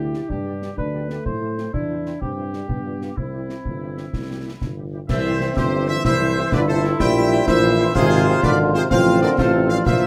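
Bright trumpets carry the melody of this spirited, festive military-style wind band march in 6/8, over a mellow euphonium and a tight woodwind section on second lines, warm French horns in the background, an up-front yet roomy tuba bass, and a close concert snare, bass drum and dark clash cymbals, before an airy, close-miked flute section with vibrato and smooth-topped trombone chords join at 5.1 seconds.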